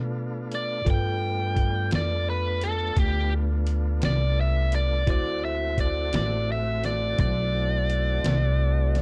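A slow blues in 12/8 with a straight feel, this short excerpt from a longer piece is soulful and gritty, its harmony resting on G9 before moving to D9 at 5.1 seconds. An up-front upright bass, woody and dark with plucked steel strings, sounds from the very start beneath a smooth tonewheel organ holding sustained chords through a slow rotary speaker. A bell-like tine electric piano adds clean accompaniment from the background. At 0.5 seconds a trip hop sampler-style drum kit enters, compressed and pitched down, with a thumpy kick, a medium-tuned snare and hi-hat. At the same moment a biting lead guitar, bright and overdriven and picked up front, takes the melody. The production is dark and warm, with little reverb.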